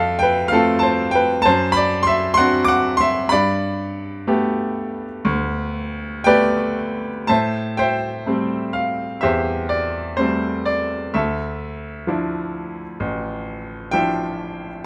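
A bright grand piano carries this short classical piece alone, its brilliant, open tone placed up front with short sustain. The playing is lyrical and rubato, unfolding at a slow 63 BPM in 4/4, and the mood is dark and melancholic despite the clarity of the instrument. The opening passage moves through F, D7/F# and Gadd9 before the music settles into A minor at 7.3 seconds, where an Am7 and later a Dmadd9 deepen the sombre colour. The piano spans a broad range, from deep A1 bass notes up to D6 in the treble. Close, detailed microphones and light reverb keep the sound intimate, and the passage is cut from a longer piece, ending at 14.9 seconds.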